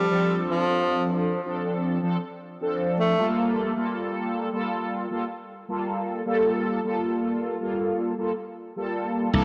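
A clear tenor saxophone sings a brief melody over mellow, detuned sawtooth synth brass with phaser and analog delay in this melancholic, nostalgic vaporwave fragment at 78 BPM in G minor, moving from Dm7 to Gm9 through a lush hall reverb and cassette-tape haze; the saxophone falls silent at 3.3 s, the brass carries on, and a growly, punchy slap bass strikes at 9.3 s just as the piece is cut off.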